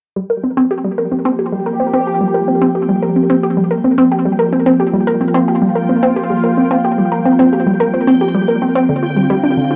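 A straight 4/4 pulse at 110 BPM drives this expansive, mysterious fragment of sequencer-driven space music, with an up-front, round analog pluck riff of detuned sawtooth tone, fast attack and decay, carried by chorus, tape echo and shimmer reverb from 0.2 s. A bright, evolving resonant pad enters at 0.6 s with slow-attack sustained chords and a filter swell, while a quiet, bubbling texture of random filter steps, present from 0.2 s, fades in beneath, bathed in shimmer reverb. The harmony rests on Gm7 before moving to Dm7 at 8.9 s, all within the damp booth ambience of a home cassette recording.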